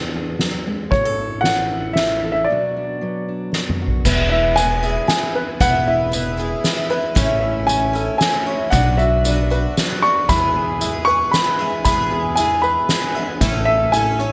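In a gentle three-beat waltz lilt, this uplifting indie folk passage opens with a fingerpicked steel-string guitar, a thumpy, woody pizzicato upright bass and a soft-mallet drum kit with dark cymbals and a boomy kick, while an intimate upright piano carries the melody up front, its action noise audible and a slapback echo trailing each phrase. A break arrives at 2.5 seconds and a drum fill at 3.5 seconds leads into a fuller second section at 4.1 seconds, where the fingerpicked guitar gives way to a bright, shimmering octave-doubled twelve-string with subtle chorus and finger squeak, a second, long-sustaining piano adds arpeggios, and a jingly tambourine joins close by. Light reverb gives the building arrangement a natural, warm glow as this excerpt cuts off mid-piece.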